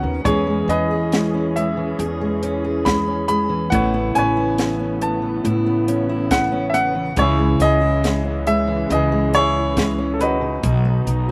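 A bright upright piano carries the melody from the opening moment, its tone brilliant and up front, while a fingerpicked steel-string acoustic guitar with a dark, concert-style sound plays the accompaniment alongside it. This hopeful, nostalgic acoustic folk-pop ballad moves at a slow 69 BPM in a straight 4/4, set in E major and tuned to A4 = 443 Hz. A muted chamber string section, bowed con sordino with vibrato and a soft attack, holds veiled sustained chords in the background. Beneath them, a pizzicato upright bass on gut strings adds a woody, thumpy low end. A compact cocktail drum kit enters at 0.3 seconds, with a punchy kick, a high-tuned snare and hi-hat sounding dry. The harmony moves through E6, Aadd9, C#m and B over this short excerpt, cut from a longer piece and recorded outdoors with little reverb.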